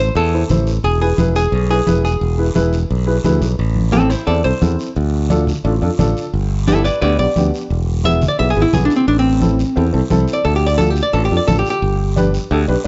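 An up-front, clean, hollow-body archtop guitar carries the melody and takes a jazz-flavoured solo from 3.6 s in this driving, danceable cumbia excerpt at 175 BPM in A minor, backed by a growly, bright fingered electric bass, a mellow, woody, slightly detuned upright piano, thick-skinned, damped congas sitting in the background and a raspy, close guiro, in a dark production with light reverb.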